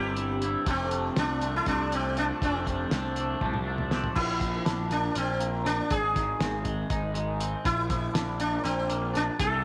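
In a 7/8 at 240 BPM counted in eighths, this hypnotic, kaleidoscopic psychedelic rock excerpt sets a buzzing, shimmering sitar melody with slapback echo over a bright, twangy double-tracked guitar riff washed in phaser, a round, fuzzed-out picked bass, and a muffled, thuddy cloth-damped drum kit with a fat snare and dark cymbals that enters at 0.2 seconds and rolls through a fill from 3.4 seconds into a new section at 4.2 seconds, all set in a moderate echo chamber reverb with a small-room feel.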